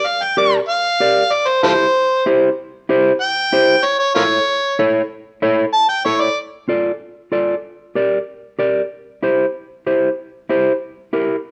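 A straight, driving 4/4 groove pushes this danceable Latin cut, taken from a longer piece, at a brisk clip. An overdriven harmonica leads from the very start, playing a pop-style solo up front with a gritty, amplified bite, light vibrato and percussive tongue slaps. A clean, fingered electric guitar joins at 0.4 seconds, its dark, mellow tone sitting close in the mix as it supplies the accompaniment over chords that move from Gm to C and A. When the harmonica solo ends at 6.4 seconds, the guitar carries the second section on its own through Dm, Gm and C. A moderate large-studio reverb lends the whole performance a roomy, polished sheen.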